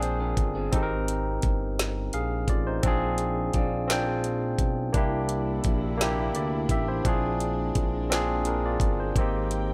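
Sultry and yearning, this slow six-eight R&B excerpt rests on an up-front electronic drum kit with a knocking kick, woody snare and metallic hats, a smooth sawtooth synth bass with vibrato and transformer saturation, and a barky, clean tine electric piano carrying the Bb9, Abmaj9 and C9 chords. A bright, slightly broken-up electric guitar picks a twangy second line in the background until 4.9 seconds, when a bowed string section takes its place with soft, sul tasto sustained chords. The sound is dry and gritty, with little reverb.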